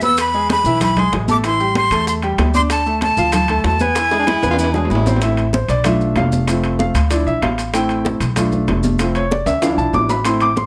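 A close, detailed sound with light reverb frames this fiery, passionate salsa cut from a longer piece, moving at a brisk 191 BPM in straight 4/4 and settling into A minor. A bright, breathy metal flute with vibrato and a crisp, chiffy attack carries the melody up front until 4.9 seconds, while a clear grand piano and a woody, dark upright bass with thumpy gut-string pizzicato hold the accompaniment throughout. Ringing, high-tuned congas struck with hard hands are joined by tight, very quiet bongos played with soft hands, vintage metal-shell timbales and grainy, mellow maracas sitting in the background. A whispered, intimate baritone saxophone slips in briefly as a second line just before the piano takes over with a solo from 5.2 seconds. Drum fills mark the turn into that solo and again near the close, as the harmony cycles through Am, Bm7b5, F and Dmadd9.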